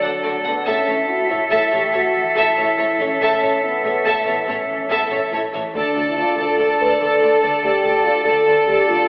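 Heard from far back in a wet scoring-stage reverb with a thin, telephone-like tone, this heroic, soaring cinematic passage in A major moves at 95 BPM in 12/8, as a lush, vibrato-laden violin section carries the melody above a second violin line, an airy silver flute and a clear, vintage-toned oboe, while mellow French horns hold sustained chords, violas accompany in the background, a ringing harp plays arpeggios behind them, and smooth bowed cellos with woody double basses anchor the bass through a move from D to A and then to D minor at 5.7 seconds in this 9.1-second fragment.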